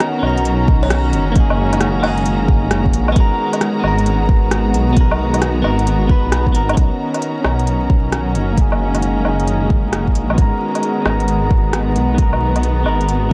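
A dry, gritty hardware recording dusted with vinyl crackle carries this nocturnal, rainy slice of future garage at 133 BPM in G# minor, its 16ths swung as it cycles through Bmaj9, F#69 and G#m9. An up-front electronic kick with a deep, tape-warm thump and a small-room kit of smooth hi-hats, rim clicks and woodblock drive the groove, while a menacing, detuned sawtooth bass swells and pumps beneath veiled, con sordino strings with vibrato. A clean, compressed, picked electric guitar carries vintage 12-bit sampler texture, tape echo and a low-pass filter that sweeps from 6.8 s, and a very quiet, buzzing, woody kalimba sounds only from 0.8 to 2.4 s.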